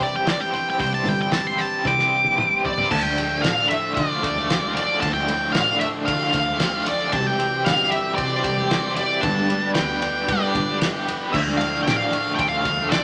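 An octave-fuzz lead guitar, dark, picked and up front with wah and distortion, carries the melody of this dark, trippy psychedelic rock passage in D dorian at 114 BPM in a straight 4/4, taking a solo through the opening until 2.9 seconds, with a drum fill arriving from 1.9 seconds. Beneath it, a double-tracked overdriven electric guitar, bright and picked with tremolo, plays a riff, and a reedy tonewheel organ with key click holds sustained chords in the background through a slow rotary speaker. A cloth-damped drum kit gives a thuddy, gritty, saturated sound with a fat snare, tight kick and rolled-off top, and very quiet congas with a thin skin and soft hands add percussion. From 0.8 seconds a single bowed double bass enters, played sul tasto with a soft attack and a smooth, floating tone. The harmony opens on Cadd9, then moves through Dm, C and G back to Dm, all within moderate studio reverb in a fragment cut from a longer piece.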